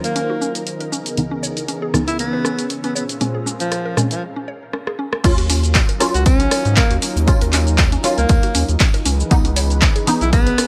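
This deep, moody house excerpt at 118 BPM, in a swung 4/4, opens with several parts together: a clear, close-miked alto saxophone playing a jazz-style melody with vibrato and dub echo; a smooth, detuned analog pad; a muted, phaser-treated dub chord stab under a filter sweep; an ethereal, airy pad in the background; and a punchy analog drum machine of handclaps, hi-hat, rim click, shaker and crash cymbal. A woody, mallet-like synth pluck joins at 0.2 seconds, its arpeggios carrying delay and 12-bit sampler grit. After a short break and drum fill, the drop at 5.2 seconds brings in a round, mellow analog bass, an up-front electronic kick and a very quiet acoustic studio kit of snare, hi-hat and tambourine. The sidechain pumping heard from the start on both pads, the stab and the pluck now also shapes the bass, as the chords move through Ebm7, Dbm7 and Bbm7 in light small-room reverb.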